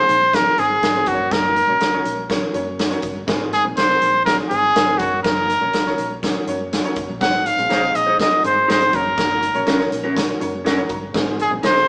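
A bright trumpet carries the melody up front in this joyful, danceable slice of uptempo 1960s-style soul, played with light vibrato and scooped notes in a pop style. Beneath it, a woody, slightly detuned upright piano comps through the changes, which move between Ab and Gb at 122 BPM in a straight 4/4. An acoustic big-band drum kit sits prominently, with a boomy kick, a medium-tuned snare and hi-hat, while a round, dark hollow-body short-scale electric bass, fingered and amped, stays in the background. At 7.7 s an electric guitar joins with picked, slightly broken-up lo-fi stabs through a small old amp, and the piano adds a fill at 10.4 s. The band sounds like it is playing live in one moderate stone room with a small-speaker character, cut from a longer piece.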